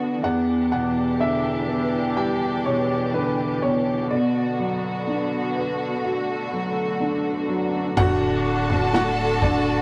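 A rough rehearsal-room recording with a short, wet booth ambience frames this short cut from a tender, heartfelt pop ballad in D major, moving at a slow 62 BPM in straight 4/4. A clear concert grand piano with long sustain carries the melody over a woody, up-front upright piano accompaniment. Meanwhile, a rich studio string section holds smooth bowed chords with light vibrato as the harmony moves from Em7 to Bm. An electronic swell appears in the background at 6.6 seconds and leads into a new section at 8.0 seconds, where the music lands on D. There, a distant, lush violin section adds an expressive second line, and a thick, saturated sub bass sits on a deep D1. A dark, small-room acoustic drum kit joins with a tight kick, snare, toms and crash cymbal, stopping at 9.6 seconds.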